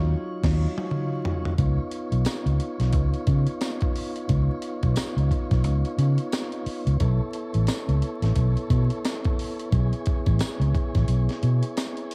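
Over a swung sixteenth-note groove in 4/4, this gritty, playful funk snippet opens with a band accent and a drum fill from a compressed, sampler-style breakbeat kit with a thumpy kick, run through cassette tape and sitting up front beside a dark, round fingered electric bass, while a mellow tonewheel organ holds clean sustained chords with key click and a slow rotary speaker, and a jingly, close tambourine enters at 2.3 seconds, the whole of it heard as a dry home cassette recording with vinyl crackle.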